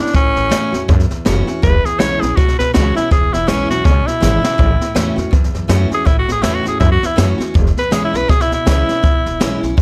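Swung eighths in 4/4 drive this upbeat, retro rockabilly cut, where a raspy, forceful tenor saxophone solos up front with light vibrato over a picked dreadnought acoustic guitar, a woody, thumpy pizzicato upright bass and a brushed drum kit with a high-tuned snare and boomy kick that plays a short fill at 4.2 seconds, set in light reverb.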